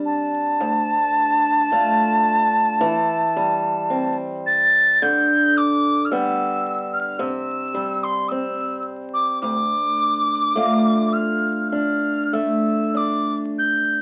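Mournful and haunting, this Celtic slow air drifts in free rubato as a mellow tin whistle carries the melody with pure, vibrato-laden tone and soft attacks, sounding expressive yet faintly distant. Beneath it, a picked old ladder-braced acoustic guitar supplies dark, woody, boxy accompaniment on aged strings, moving through chords from Dm to C and G/D. A damp small-room reverb and the crackle of a very old 78 rpm record frame this brief fragment cut from a longer piece.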